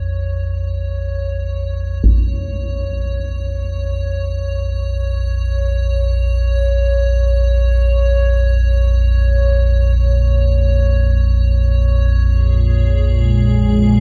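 Dark and cavernous, this dark ambient drone in Bb minor moves in free time, an excerpt cut from a longer piece. A deep, ominous drone rumbles up front from the very start, its triangle and sawtooth tones swelling in slowly and sustaining under its own reverb and a subtle chorus. High above, an icy glass pad fades in across the whole 14 seconds, crystalline and airy with a ring-modulated, wave-folded shimmer, chorus and a trail of built-in reverb. At 2.0 seconds a taiko ensemble strikes briefly with hard sticks, its acoustic live-room hit muffled by a low-pass filter. Near the close, the harmony shifts from Bbm to Dbsus4/Bb at 12.2 seconds, and at 12.5 seconds a moody analog pad of detuned square and sawtooth waves with a sub octave joins on sustained chords, thickened by lush chorus. The whole is set in a wet cathedral reverb with a dark production.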